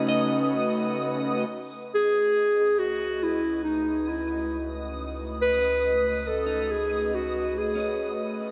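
Soaked in a wet plate reverb, this short ambient cut from a longer piece has a dreamy, spacious and serene feel in a straight 4/4. A mellow clarinet carries the solo melody up front in a classical style, its line touched by tape echo before it stops at 8.2 seconds. Beneath it, an airy, breathy pad holds sustained chords with a slow attack, long release and a chorus shimmer, while a clean electric guitar plays picked arpeggios in the background with its own tape echo. High above, a twinkling granular texture adds sparkling, octave-up glints. These three parts fade in from 1.5 seconds. At 2.9 seconds a deep, rumbling drone with an ominous, nasal ring-modulated edge enters to anchor the bass and fades in along with them.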